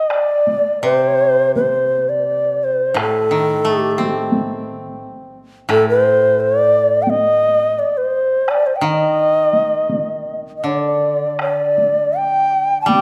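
In a rubato 4/4 pulse around 78-90 BPM, this calm, austere fragment of Japanese chamber music in D sen opens with a breathy, reedy shakuhachi melody at 0.0 seconds, close and up front with vibrato and tongued notes between A4 and A5, soon joined by a heavy-stick taiko ensemble at 0.1 seconds and a dry, woody koto accompaniment played with fingerpicks from 0.8 seconds, all set in a moderate concert-hall reverb.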